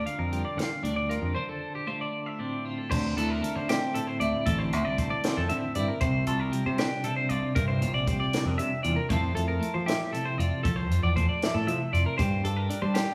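Two bright, clean twelve-string electric guitars open this wistful, restless excerpt of math rock and midwest emo, one picking chords through a tremolo effect while the other picks high arpeggios, joined at once by a growling, overdriven fingered electric bass. Set in D minor in a straight 6/8 at 78 BPM, the piece moves from Gm7 to Dm7 before a break at 1.4 seconds, then settles at 2.9 seconds into a longer passage that drifts through D7sus2, C9sus4, Fmaj7 and Gm11. A compact cocktail drum kit sounds dry and natural, with a punchy kick, a high-tuned snare, hi-hat and dark crash cymbals. Both guitars sit up front and compressed, the accompanying one carrying a twangy edge, while the bass comes through direct and amped. The band plays live together in a small room, wrapped in a wet reverb with a 1.2-second tail.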